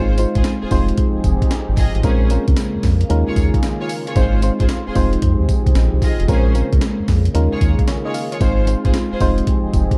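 A dry, dark mix with almost nothing in the way of room sound frames this slick, bouncy new jack swing clip, cut from a longer piece and moving at 113 BPM in 4/4 with a strong swing on the sixteenths in B-flat dorian. The sampler-style breakbeat kit, entering at 0.2 seconds, sits up front and sounds compressed and gritty, with a thumpy kick, a high-tuned snare, hi-hat and tambourine. Matching the drums in level, the round analog bass blends sawtooth and sine into a deep, sustained low end with a fast attack. An FM electric piano carries the accompaniment with a noise layer and decaying notes, while a detuned, resonant pad with chorus holds evolving sustained chords with a slow attack and a filter swell. Further back, an intimate, close studio string section plays bowed sul tasto stabs with vibrato, a smooth top and delay, dropping out at 9.3 seconds. The harmony circles through Ab6, Fm7, Bbm9 and Eb9sus4.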